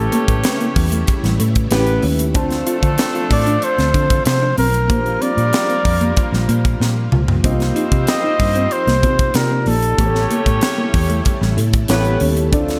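Nocturnal and urban, this short cut from a longer piece is polished 1980s jazz-funk pop in a straight 4/4 groove. A warm flugelhorn carries the melody up front with light vibrato and scooped notes, falling silent at 10.6 seconds, while a clear, tight horn section with octave doubling plays a second line alongside it. A mellow tine electric piano with lush chorus and a shimmering, sawtooth string machine of violins hold the harmony, the strings' soft-attack chords sitting in the background. A dark, foam-muted fingered electric bass gives a round, amped low end, and a clean electric guitar, also bathed in lush chorus, plays a riff further back. The crisp fusion drum kit sits up front with a high-tuned snare, tight kick and gated reverb, breaking into a drum fill at 6.8 seconds as the chords move through A7, Dm7, Bb6 and Cm11 before returning to A7.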